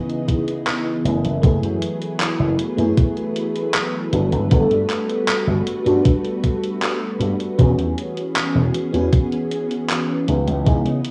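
Woozy and nostalgic, this short vaporwave clip drifts at 78 BPM in a straight 4/4, moving through C#m9, F#m11, Gmaj9 and E6 chords. A lush, up-front FM electric piano with a soft pad layer carries the accompaniment through phaser, subtle chorus and analog delay, while a silky string machine with vintage 12-bit sampler grit sustains chords beneath. A thumpy electronic kick, gated 80s drum-machine handclaps and hi-hat, and a bright, envelope-filtered slap bass entering at 1.0 s fill out the groove, all set in a rough home-demo mix with cassette-tape character and small-room ambience.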